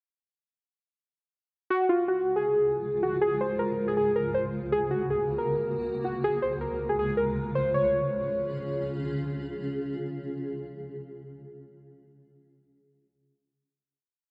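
Warbling, nostalgic lo-fi synth keys carry a looping melody with chorus from 1.7 s, sitting up front like a repeated sample in this short, wistful yet triumphant trap-flavored hip hop piece with a half-time feel. A cloudy, detuned granular pad with its own reverb enters at 2.3 s, sustaining blurred, evolving chords under the breakdown. The keys stop at 8.8 s, leaving the pad to carry the final chord, which it lets ring in a lush hall reverb until 11.5 s.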